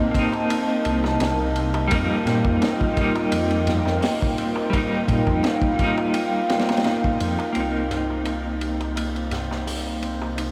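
Trip hop with a brooding, smoky mood, this excerpt from a longer piece rides a lightly swung groove, its dreamy mix soaked in a huge ambient reverb. A clean, fingered electric guitar plays dark accompaniment through tremolo and tape echo, while a warbling, lo-fi pad built from wave-folded square and triangle tones holds nostalgic sustained chords with chorus and its own reverb. In the background, a bright, thumb-plucked concert harp rings out arpeggios through a low-pass filter and diffuse ambient delay, and a filter sweep colours it once the second section begins at 7.6 seconds. The crunchy breakbeat kit sits up front with a punchy kick, high-tuned snare and dark cymbals, its gritty, saturated sound rolled off at the top, while a very quiet metal-shell darbuka adds soft-handed percussion from 0.3 seconds. A rumbling, beating detuned saw bass enters at 0.9 seconds, and the harmony moves from Cm7 to F9sus4 before returning to Cm7.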